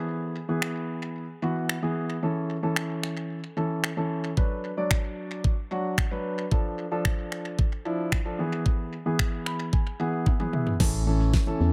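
An up-front, deep-voiced grand piano opens this euphoric, carefree dance-pop excerpt, pumping under sidechain through an E, A, Bm, Dm, E progression, and is joined moments later by a knocking, fat-snared electronic pop kit with tape echo, crash, finger snaps and toms. The piano plays its own fill from 9.2 seconds before drum fills carry it to a landing on A at 10.8 seconds, where a hollow, dark, organ-like FM bass and a mellow, chorused analog pad in the background arrive, all within a lightly reverberant, echo-heavy mix.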